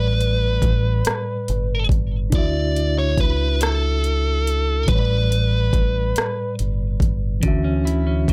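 A biting, overdriven lead guitar carries the melody up front in this tender, sensual slow R&B piece in six-eight at 47 BPM in D major, cut from a longer piece. Beneath it, a mellow tine electric piano comps through its built-in speakers while a deep, round dub bass, fingered and dark, sits up front with the drums. The electronic R&B kit, entering at 0.2 seconds, pairs a knocking kick with metallic hats and rim clicks, its sound re-recorded in a small room. The harmony sways between A9sus4 and Dmaj9, and as the lead falls silent at 6.5 seconds, a clean, compressed picked electric guitar slips in at 7.4 seconds with a second line. The mix stays dry and intimate, with little reverb.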